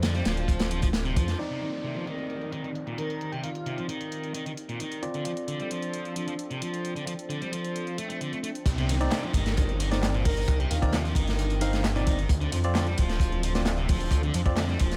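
A crunchy, gritty breakbeat kit and a thick, menacing detuned saw bass hit up front at the start, drop out after barely a second, then slam back in at the drop at 8.7 seconds in this energetic, swaggering breakbeat cut at 132 BPM in C dorian, moving between Dm7 and Cmadd9. Throughout, a bright, compressed distorted electric guitar riff trails dub echo, while a punchy analog drum machine adds handclaps, hi-hat and ride cymbal re-recorded in a large room, and a swirling phased pad pumps in the background. Barky overdriven tine electric piano stabs through a combo amp get a filter sweep alongside the pad before the drop, a downlifter and swell sit in the background, and an airy, dreamy lead with vibrato and an old record sound floats in for two brief phrases.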